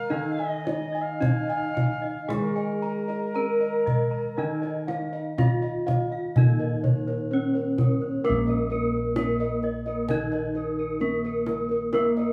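Heard in a moderate studio reverb with the close feel of a band playing live in one small room, this excerpt of Javanese gamelan moves at a slow, straight 53-65 BPM in 4/4, in a Bb slendro tuning, with a shimmering, ceremonial mood. A bronze metallophone carries the melody up front, struck with a horn mallet and paired in tuning so its dark, smooth tone pulses with shimmering beats. Beneath it a second metallophone plays a ringing, dark accompaniment, while a third, sounded with a wooden mallet, spins airy arpeggios in the upper register. Bossed gongs anchor the bass with a round, beating tone, and a softer set with padded beaters joins at 0.4 seconds for mellow arpeggios, as the tight kendang enters at the same moment, close and prominent. A bright, reedy bansuri traces a tongued, straight-toned second line over the opening before falling away at 5.3 seconds, and the music moves into a new section at 8.2 seconds.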